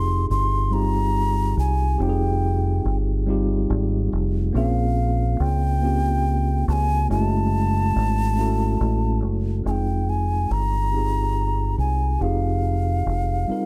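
A breathy alto ocarina with a hollow clay tone, lifted highs and vibrato carries the tongued melody from the first moment, sitting up front over clean tine electric piano chords heard through built-in speakers and a deep, round fingered electric bass. This is slow, yearning late-night R&B in six-eight at 47 BPM in F minor, moving through Fm9, Bbm9 and Gbm9 before returning to Fm9 at 9.7 seconds as a new section begins. The dark, amped bass stands forward in a small room ambience, and the passage, cut from a longer piece, ends at 13.7 seconds.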